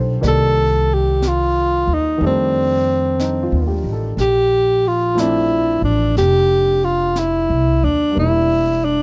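A dry, close recording in a small room gives this romantic, tender jazz ballad excerpt the intimate character of a 1970s studio session. Upright bass and warm upright piano begin together at 0.0 s. The bass is played pizzicato on steel strings and sits up front with a woody, thumpy tone, while the piano, polished and present, holds an accompanying role. A jazz kit played with brushes joins at 0.2 s, with a high-tuned snare and hi-hat keeping a natural, acoustic feel low in the balance. The mellow tenor saxophone carries the melody from 0.3 s, up front in a subtone with a smooth top over a swung harmony that moves through Cm9, F13 and Bbmaj9 before reaching Em7b5 as the fragment breaks off.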